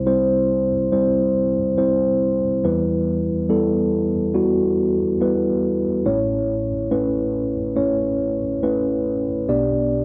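Bathed in a moderate large-studio reverb, this heartfelt, intimate folk passage cut from a longer piece features a solo tine electric piano, mellow and clean through its built-in speakers and placed up front, playing from A1 to D5 at 70 BPM in straight 4/4 as it moves from C to Em at 2.6 seconds, A at 6.1 seconds, and G/B near the close.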